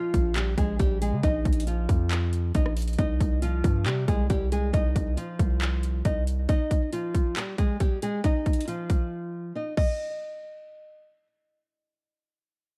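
A small, fingerpicked nylon-string guitar carries the melody up front from the very start, its finger squeaks audible and its lines trailing a digital delay through the whole 11.3 seconds. This is a triumphant yet wistful trap cut at 137 BPM in 4/4 with a half-time feel, tuned to A4 = 436 Hz and moving from Bb5 to Cm to Eb. Beneath it, a hard-hitting 808-style bass punches in with a heavy, saturated sine tone, a noise layer and a fast, decaying attack, dropping out at 6.5 seconds. The electronic trap drum kit sits just as forward, with an overdriven, hard-clipped kick, metallic hi-hats, handclaps, rim clicks and a crash cymbal, until a brief break lets it fall away at 9.9 seconds. Dark digital ambience and a warm production wrap the parts, leaving the guitar to close the passage alone as it is cut from a longer piece.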